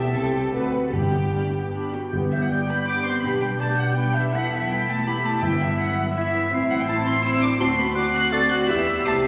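A graceful, cheerful classical-period orchestral movement in a quick, rubato triple metre opens with an intimate, softly bowed violin section carrying the melody with light vibrato, while a second violin line, a hollow, airy flute and a background clarinet weave counter-lines over a dark, woody viola section, roomy distant French horns holding chords, a smooth-topped double bass section and a very quiet cello section, with dry, calf-headed timpani entering at 0.9 s and a mellow solo cor anglais joining at 2.5 s, within a wet scoring-stage reverb.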